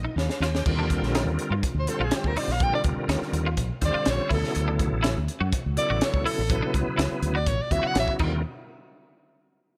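A reedy tonewheel organ fill with key click, light overdrive and slow rotary speaker opens this slick, bright electric jazz fusion excerpt at 123 BPM, joined at 0.2 seconds by a crisp, gritty drum fill from a high-tuned snare and tight kick, before a breathy soprano saxophone with soft attack and vibrato takes an up-front solo from 0.7 seconds over Ebmaj9 and Dmaj9 chords, a round, dark fretless bass, and compressed, twangy clean guitar stabs with ensemble chorus sitting in the background, all set in a light reverb.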